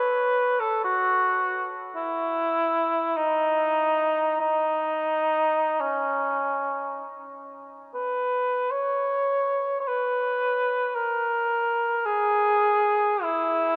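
A mellow cor anglais plays alone and up front from the start, its light vibrato and vintage classical tone carrying a lonely, yearning line in slow, free 3/4 rubato at 32-58 BPM that settles into G# minor at 8.7 s, all bathed in a long, wet cathedral reverb (RT60 5.7 s) and a dark production in this brief fragment of a longer expressive classical piece.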